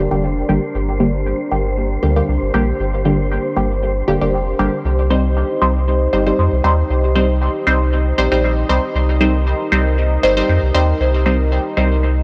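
Dub techno with a deep, nocturnal mood and a gentle swing, where a muted, detuned chord stab drenched in chorus, phaser, dub echo and tape grit moves through a filter sweep over a round, soft sub bass and a moody, slow-blooming analog pad, while a breathy, wind-like noise texture hovers in the background and the harmony shifts from Gm to Cm at 4.8 seconds.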